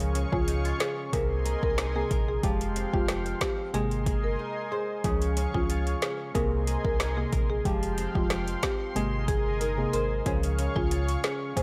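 Set in light digital reverb, this bouncy, summery dancehall excerpt at 92 BPM in Ab major features an up-front, overdriven afro-pop drum kit with a deep kick, woody snare and metallic hats, plus a full sine-and-triangle sub bass with octave, a soft, round, detuned pluck with chorus, a lush, warbling vintage unison pad pumping under sidechain, fingerpicked nylon-string guitar arpeggios through tape echo, and a padauk-barred marimba melody with medium mallets entering at 0.3 s, all cycling through Db, Abadd9/C and Fmadd9 chords around a brief break at 4.4 s.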